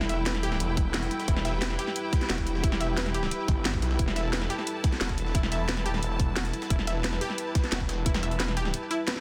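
A snarling, growling distorted saw bass sits up front in this aggressive, mechanical dark technical drum and bass excerpt at 177 BPM in E minor, held on E minor throughout, driven by a tight, tape-warm electronic kick from 0.8 to 8.1 s, a layered kit with cracking snare and bright hats, and a very quiet, gritty breakbeat sampler-style kit, while a nasal, moody analog pad with chorus and sidechain pumping lingers in the background, a distant, smooth symphonic string section adds bowed texture, and a round analog pluck with filter sweep, chorus and delay spins arpeggios over a dense, heavily limited mix with light reverb.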